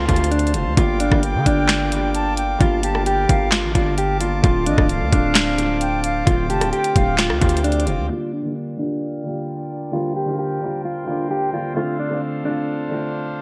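A half-time trap groove carries this brooding, hard-hitting hip hop excerpt: an up-front electronic kit with a knocking kick, sharp snare, bright hats, handclaps and rim clicks under gated reverb, alongside a distorted, saturated 808-style bass that hits heavy until both drop out around 8.1 seconds. Over them a dark, clean, fingered electric guitar carries the melody through lush chorus and digital delay, while a worn, boxy grand piano with audible action noise comps beneath, and a pipe organ holds thick, romantic sustained chords on its foundation stops. A pure, straight-toned concert flute adds a delayed second line from 1.0 seconds, and a filter sweep shapes the final stretch from 8.1 seconds in this bright, 1980s-style digital production.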